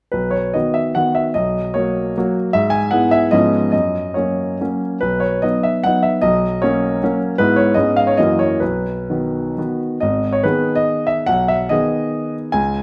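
A moderate recital hall reverb, about 1.4 seconds long, surrounds a concert grand piano that sits up front, with a smooth, vintage tone and a deep bass. This short classical excerpt is a graceful, rustic romantic dance in 3/4, its dotted rhythms moving between 121 and 170 BPM with a flexible rubato feel. The solo piano plays from 0.1 to 12.8 seconds across a range from G#1 to G#5, tuned to A4 = 439 Hz. The opening stays in B major, circling through F#, E and C# harmonies before settling back on B. At 10.0 seconds the music turns to G# minor for the brief closing stretch.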